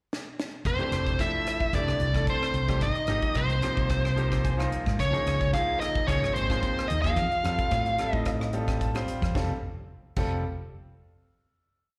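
A tight funk drum kit opens with a brief fill before a short, bright electric jazz fusion piece settles into a funky samba groove, its high-tuned snare and dark cymbals up front over a round, punchy fretless bass riff. A smooth overdriven lead guitar carries a free, unrepeating melody with slapback echo and plate reverb, doubled in unison by a breathy, whispered trombone sitting in the background, while a brilliant grand piano adds syncopated quartal chord stabs and short fills near 4.2 and 8.5 seconds. The harmony drifts through lush major-ninth chords, and the whole performance comes across as a live gig heard through the venue's PA in a recital hall, ending on a held final chord.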